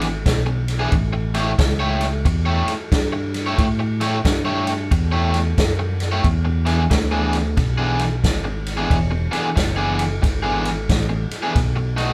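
The recording has the close sound of a band playing live together in one studio room, wrapped in a short, wet reverb. This soulful, gritty electric blues shuffle in 4/4 carries a swung eighth-note feel and is cut from a longer piece. An overdriven semi-hollow guitar plays the riff up front with a bright, picked, hollow-bodied tone, while a fingered electric bass holds the low end with a punchy, direct sound. A vintage acoustic drum kit of kick, snare and ride sits close as well, its dark cymbals and rolled-off top giving it a natural character. All three play throughout the 12.1 seconds as the harmony moves from E7 to A7, returns to E7 at 6.2 seconds and reaches B7 at 11.6 seconds.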